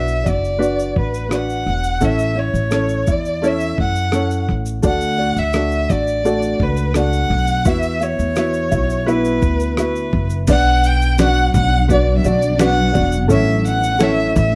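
A straight 4/4 groove at 85 BPM drives this sunny, carefree acoustic pop excerpt, built on a gritty, overdriven sampler-style drum kit with a thumpy kick, rim click, shaker and crash, a growly pizzicato upright bass up front, and a mellow, thumb-plucked ukulele moving through Bm, A, D and Esus2. A rich, bowed solo violin carries the melody with smooth vibrato and plate reverb, while a felt-muted upright piano adds soft, intimate support in the background from 4.8 to 10.5 seconds. At 11.4 seconds a blurred granular cloud pad with a slow attack enters behind the band, and the whole piece sits in a lightly reverberant room.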